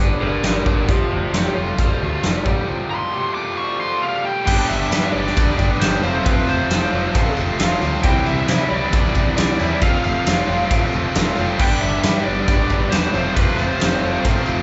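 A straight 4/4 pulse at 135 BPM drives this swaggering classic rock passage, cut from a longer piece, with a big, natural-sounding acoustic kit up front: a punchy kick, a medium-tuned snare, hi-hat, ride and crash. A growling, overdriven electric bass sits beneath two background riff guitars, one bright, scooped and compressed, the other raw and lo-fi. A dark, gritty lead guitar through a small cranked amp carries the melody from the start, taking a solo that reaches a break at 2.7 s. At 4.5 s the band moves to a new section over a G, F and Cadd9 progression, as a tight, double-tracked distorted guitar joins the riffing and a very quiet, jingly tambourine enters close and dry. A shouting, lightly overdriven tonewheel organ on a rotary speaker holds sustained chords, barely audible in the mix. The band sounds like it is playing live in one large studio room with moderate reverb and a softened top end.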